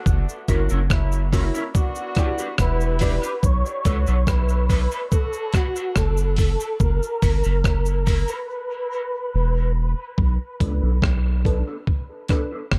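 Deep and spacious, this dub reggae excerpt moves at 71 BPM in B minor, built on a round, soft sub bass and a gritty, compressed breakbeat kit with a thumpy kick, both up front, while a dry cabasa ticks through dub echo until 8.5 seconds. A slightly broken-up picked electric guitar and boxy dark baby grand piano stabs with audible action noise carry the accompaniment, joined by a distant, roomy horn section as a second line, all through echo and filtering, as a mellow tonewheel organ on slow rotary speaker sings the melody from 2.2 seconds. A filter sweep runs through the first ten seconds, a break arrives at 8.5 seconds over an E5 chord, and the tune settles onto Bm7 in a dark, dry production.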